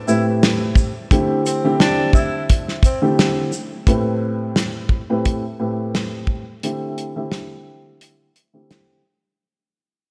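A breathy, distant tenor saxophone leads this moody, reflective boom-bap hip-hop excerpt at 87 BPM with a soft 16th-note swing. It plays a whispered, scooped jazz solo with subtone and vibrato over a dark, woody, boxy upright piano with cassette-tape colour, and a soul drum kit with a tight kick and rolled-off top, moving between Am9 and D9sus4. The saxophone drops out at 3.0 seconds. From 3.9 seconds a fade-out begins and a filter sweep runs across the piano, with a break arriving at 6.6 seconds, all inside a dreamy, lush hall reverb with vinyl crackle.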